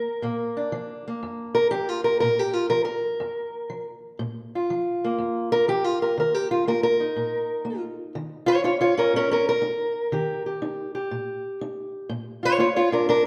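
Acoustic country blues with a rollicking, swaggering swung feel, this brief excerpt features a solo fingerpicked steel-string parlour guitar, dark, woody and boxy with the dull character of old strings, placed up front in a reverberant recital hall throughout its 13.3 seconds.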